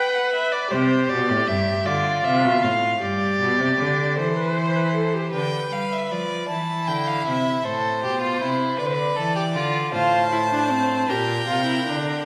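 A stately yet lively baroque-style fugue for string quartet in C major at 52 BPM in 6/8, this excerpt opens with a smooth, vibrato-laden second violin and an expressive viola gliding with portamento, joined at 0.7 seconds by a focused cello; a rich, even first violin takes up the melody at 5.3 seconds, and the viola, silent in between, returns at 9.9 seconds, all four bowed in a reverberant recital hall heard from further back in the room.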